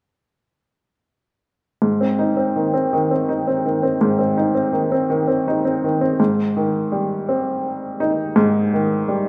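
A rough home-demo sound bathed in a lush hall reverb frames this tender, romantic pop fragment in 6/8 at 55 BPM in Ab major, where a solo upright piano, brilliant, worn and slightly detuned with audible action noise and a slapback echo, plays up front from 1.8 to 9.3 seconds, moving from an Ab chord to Abmaj7 at 6.2 seconds.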